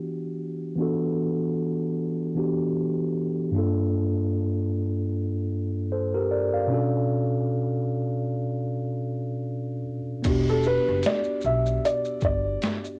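A lightly swung 76 BPM lo-fi hip hop groove in E minor opens on a mellow tine electric piano playing Em9, Gm9 and Bm9 through a low-pass filter and cassette tape, reflective and nostalgic in a light home-cassette room, until at 10.2 seconds a gritty, pitched-down boom bap kit with a thumpy kick and high-tuned snare arrives, joined a moment later by a woody pizzicato upright bass and then, at 10.5 seconds, a soft, felt-muted upright piano melody whose intimate action noise sits up front in this short cut from a longer piece.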